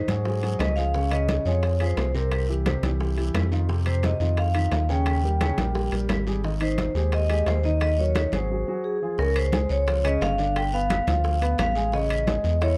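A lively, sunny Afro-Cuban jazz groove in a straight four, carried by soft-handed congas and tight, high-tuned bongos in the background, dry, close timbales with a metal ring, a raspy guiro, and distant woody claves that enter at 0.6 seconds. Over a round, deep analog bass sitting up front and a dark, mellow concert grand comping underneath, a dry, close-miked vibraphone with medium mallets and its motor off carries the metallic melody through a slapback echo. A brief break at 8.5 seconds leads into a new section at 9.2 seconds, all within a dark production under light reverb, cut from a longer piece.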